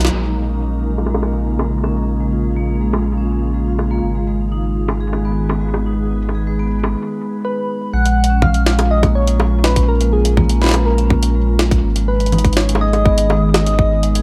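Intricate and cerebral, this IDM cut from a longer piece moves at 123 BPM in Bb phrygian, with a glassy FM pad holding ethereal chords over a deep, round sub bass and a gritty, pitched-up jungle sampler-style kit of bongos, congas, cabasa, hi-hat and a high-tuned snare, the kit drenched in dub echo. A close-miked, metallic vibraphone plays dub-echoed arpeggios throughout, shaped by a filter sweep that runs until 7.9 seconds, and during a short break from 7.0 seconds a gentle, keys-like synth lead enters at 7.4 seconds to carry the melody with chorus and tape echo. A tight, up-front electronic kick enters at 8.4 seconds, anchoring the echo-heavy mix and its spring-reverb ambience.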